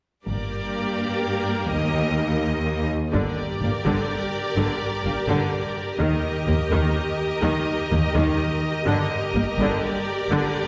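Cinematic string writing in 3/4, dark and dramatic, cut from a longer piece, with a full orchestral section of violins, violas, cellos and double basses bowing together from 0.3 seconds, heard from further back in a reverberant scoring stage. The violas carry the accompaniment up front with a smooth, even tone, while the violins sing a clear, intense second line above, the cellos sound focused and close, and the double basses sit distant beneath them with light vibrato. Moving between G minor and E-flat chords, the music builds from 3.1 seconds, with the low strings falling away at 10.4 seconds just before the upper sections stop.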